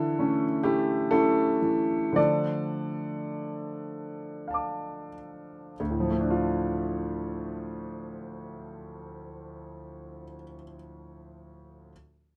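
A solo grand piano carries this short excerpt of neoclassical minimalist piano music, its tone warm, intimate and slightly boxy, with long sustain and audible action noise, and it sits up front in the mix. The mood is reflective and close, set in D minor in 3/4 with a rubato feel, the tempo drifting between 45 and 71 BPM and slowing down over the first 5.8 seconds. The harmony opens on A over D before settling onto D minor at 2.2 seconds, and the piano spans from D2 to D6. A first section runs to 5.8 seconds, and a second follows until 9.7 seconds, with the piano sounding through to 11.9 seconds. Light reverb surrounds the playing, and the tuning sits slightly high at A4 = 445 Hz.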